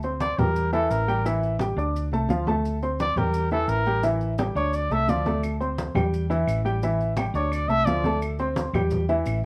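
Fiery and passionate, this D minor salsa moves at 172 BPM, led by an up-front trumpet solo with a warm tone, light vibrato and scooped notes over a woody, slightly detuned upright piano and a dark, round hollow-body electric bass. In the background sit low-tuned congas with a bright, thin skin, grainy maracas, and acoustic claves that join at 5.4 s. The recording carries a moderate studio ambience and the worn, warbly pitch drift of old cassette tape.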